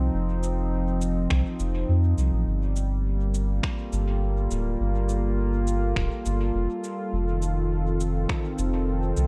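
A detuned sawtooth pad holding smooth chorused chords over a deep, round sub bass with tube saturation opens this hazy, spacious ambient dub fragment in G minor at 103 BPM, moving from F7 to Gm9 and back. Electronic cabasa and finger snaps with dub echo join at 0.4 seconds, and a punchy, layered electronic kick plays from 1.3 to 8.4 seconds, all set in a dark, lightly reverberant mix.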